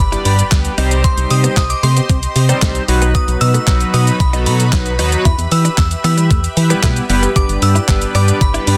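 Upbeat and summery, this dance-pop excerpt in G major moves at 114 BPM in a straight 4/4 over a G, Cm, B, Em progression. A thumpy, sampler-style 8-bit drum machine with kick, snare, handclaps, shaker and hi-hat sits up front beside a hollow, organ-like FM bass, while a glossy, detuned polysynth with chorus and a background supersaw swell both carry sidechain pumping, and a scooped, clean direct-recorded guitar riff with analog chorus hovers low in the mix. A crystalline FM bell carries the melody through chorus and digital delay, a very quiet electronic impact lands at 0.3 seconds, and the dense, heavily limited master has light reverb.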